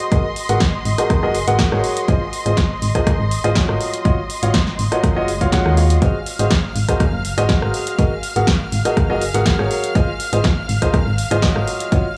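Piano house at 122 BPM with a feel-good, joyful mood, this excerpt from a longer piece is built on an up-front grand piano riff with sidechain pumping and digital delay, set over chords that move from Gb69/Ab and Fm7/Ab to Ebm9/Ab and Ab7. A lush, bowed studio violin section holds smooth vibrato chords in the background, also pumping against the kick, while a round, dark FM bass with a fast attack pumps beneath the punchy electronic kick drum. An analog drum machine supplies hi-hat, rim click and snare, a very quiet electronic swell sounds from 5.3 to 6.0 seconds, and light small-room reverb gives the mix a close, intimate sense of space.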